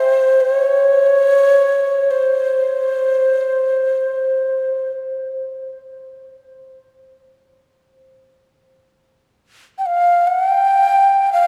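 In free time, this haunting, spacious world meditation piece, cut from a longer work, features a solo Native American-style cedar flute, breathy, hollow and tongued with a straight tone, that sits up front between C5 and G5 for its full 11.5 seconds, its tape echo drifting into a dreamy cathedral reverb with a 5.9-second tail.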